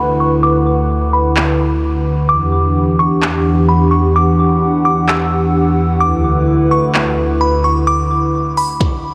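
A half-time hip hop pulse in 4/4 arrives at 1.4 s, when a minimal electronic kit of soft kick, tiny snare, clicky hi-hat and handclaps enters, its overdriven hits re-recorded in a large room. From the start, an opening break that runs to 2.3 s lets a hollow, flute-like pad hold sustained chords. The pad's detuned square, triangle and sine tones sit dark and up front, shaped by chorus, a low-pass filter and sidechain pumping. High above it, a delicate FM tine bell plays a tinkling melody of fast-attack, decaying notes, its bright tone treated with chorus, low-pass filtering and analog delay. A filter sweep runs across the whole excerpt while the harmony moves from D6 to Em9 at 2.3 s and back to D6 at 6.0 s. Soaked in a huge ambient reverb, the mix feels floating and dreamy, an atmospheric cloud-rap fragment cut from a longer piece.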